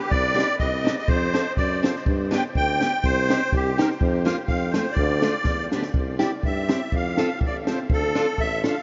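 A reedy, shimmering musette accordion sits up front in this festive, bouncy alpine folk dance band excerpt at 124 BPM in a swung 2/4, carried by a soft-attack tuba bass with vibrato and scooped notes, a compact cocktail drum kit with a punchy kick, high-tuned snare and a fill at 5.5 seconds, and a picked steel-string acoustic guitar with finger squeak in the background, all bathed in huge ambient reverb that suggests a vast, echoing space with a rolled-off top.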